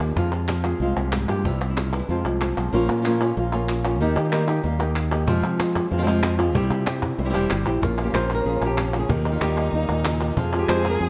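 A fingerpicked flamenco guitar opens this fiery, intense excerpt in F minor at 188 BPM, carrying the melody up front with audible finger squeak. It is joined from the start by a bright, growly fingered electric bass, a second, very quiet guitar playing stabs, crisp, close palmas hand claps, and a woody cajon with faint snares sitting in the background. The cajon drops out at 2.6 seconds and returns at 5.3 seconds, while the harmony moves through Fm, C, Bbm and Eb. At 7.8 seconds a single bowed violin enters as a second line, expressive with vibrato, portamento and a soft attack. A moderate stone room reverb and a dark, warm production give the straight 4/4 groove a tense, heated character, and the passage is cut from a longer piece.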